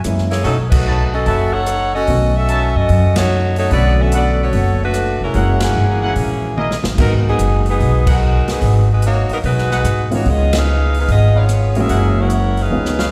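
Joyful and energetic, this big band swing clip from a longer piece moves at 147 BPM in 4/4 with a strong swing feel, centred on F# mixolydian. An up-front saxophone section carries the melody from 0.3 seconds, its bright, tight, close-miked tone touched with slapback echo, while a trumpet section with light vibrato and a smooth top adds ensemble stabs from 0.9 seconds. Underneath, a woody, thumpy pizzicato upright bass with steel strings drives the harmony through chords such as B9, Bm7, F#9, G#m7 and C#9. A polished, airy drum kit with dark cymbals, a medium-tuned snare and a punchy kick marks regular band accents and fills at 6.6 seconds and again at the close. Sitting in the background, a natural-sounding concert grand piano with deep bass, audible action noise and its own slapback echo comps warmly and intimately. The whole band is heard live through a venue's PA, wrapped in small room and recital hall reverb.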